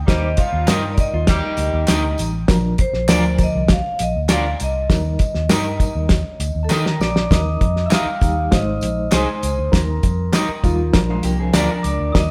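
Uptempo 1960s-style soul in Eb major at 99 BPM, uplifting and danceable, where a ringing vibraphone melody rides over a dark, round, foam-muted bass, a reedy, worn electric piano with fast tremolo, a cloth-damped thuddy drum kit with a fat snare and tight kick up front, background tambourine and handclaps, and twangy spring-reverbed guitar stabs, while a tight horn section appears only briefly at the start, a lo-fi guitar riff surfaces around 1.1 and 11.1 seconds, and a mellow, bell-like glockenspiel joins at 6.6 seconds just before a drum fill leads into the second section, all captured live in one stone room.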